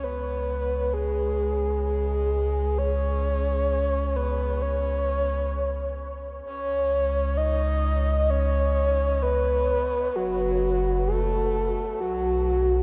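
Drenched in a huge, dark reverb with a tail that lingers for 9.3 seconds, this short ambient passage feels melancholic and spacious, as if lifted from a longer piece. A breathy, flute-like synth lead carries the melody throughout its 12.8 seconds, its soft attack and gentle vibrato shimmering through subtle chorus and delay. Beneath it, a deep, round sub bass with a sine-like tone holds sustained low notes, sitting up front alongside the lead. The harmony drifts unhurriedly in a straight 4/4, settling onto F#m at 10.1 seconds before moving on at 12.0 seconds. The overall production is warm and shadowy, leaving the two voices suspended in a vast, hazy space.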